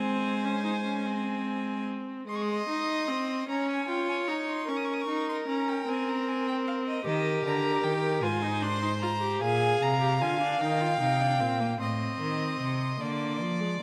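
A recital hall's moderate reverb, with a decay of about 1.7 seconds, frames this short excerpt from a longer classical work, a baroque-style fugue for string quartet in Ab major. It moves in a straight 6/8 at 50 beats per minute counted in dotted quarters, and the mood is contemplative and serious. The first violin carries the melody high above the ensemble with a rich, smooth, even tone and vibrato, while the second violin sings a more distant, focused second line just beneath it. The viola supplies clear, focused accompaniment from close up, and the cello anchors the bass with a clear, smooth sound, dropping out at 1.8 seconds and returning at 7.1 seconds. The harmony wanders from Ab through Bb minor, Eb and F minor, reaching a diminished chord as the opening material returns at 11.8 seconds.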